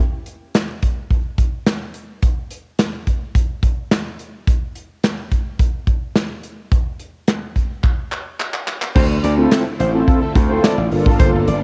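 Early-eighties boogie funk in D minor at 107 BPM, this danceable, slick excerpt opens with a punchy acoustic drum kit of kick, snare, hi-hat, handclaps and crash playing alone until a fill from 7.8 seconds leads at 9.0 seconds into a Dm9 groove where an overdriven, trebly slap bass, a mellow octave-doubled horn section with light vibrato and shimmering background string-machine violins enter, joined at 9.4 seconds by round, detuned synth brass with ring modulation and a filter sweep, all in a small-room home cassette recording that moves to Gm7 before the cut.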